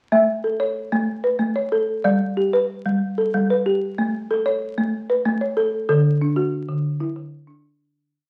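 A woody, rustic folk marimba struck with medium mallets plays alone and up front, spinning a rippling interlocking ostinato in the southern African mbira tradition at 125 BPM in a straight 12/8, moving through A, G, A and D in A mixolydian, its hardwood bars heard through a large studio reverb and the crackle of a very old 78 rpm record before the short piece fades out from 5.9 seconds.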